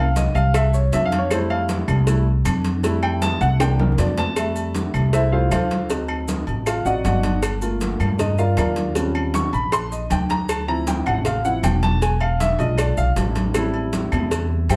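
Sunny and sophisticated, this excerpt of Afro-Cuban jazz in F major moves at 157 BPM in a straight 4/4, with an up-front baby grand piano soloing over rich chords such as Fmaj9, D7b9 and Eb13 while a growly, woody pizzicato upright bass anchors the low end, ringing distant congas, a tight high-tuned cowbell, metal-shelled agogo bells and timbales, vintage-sounding claves and grainy background maracas fill out the percussion, a drum fill arrives at 3.6 seconds, and a wet club reverb places the ensemble further back in the room.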